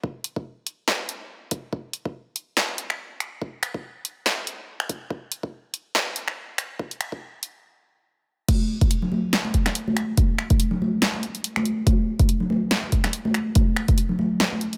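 This excerpt is a heavy, cavernous dubstep piece at 142 BPM in 4/4, riding a half-time feel with a 56% swing on the sixteenths. An electronic kick drum opens at 0.0 seconds, deep and tape-tinged, layered and re-recorded in a small room, sitting up front with a high-pass filter on both the kick and its room sound. A deep house drum kit joins at 0.2 seconds with a punchy snare, hi-hat, finger snaps and crash cymbal, also layered, re-recorded in a small room and placed up front, with high-pass filtering on the hats, snare, cymbals and room. The opening build-up halts in a stop at 7.6 seconds before the drop lands at 8.5 seconds. There, congas enter with a bright, thin-skinned, high-tuned acoustic tone, played with soft hands in a large room and trailed by dub echo. Light reverb sits across the mix.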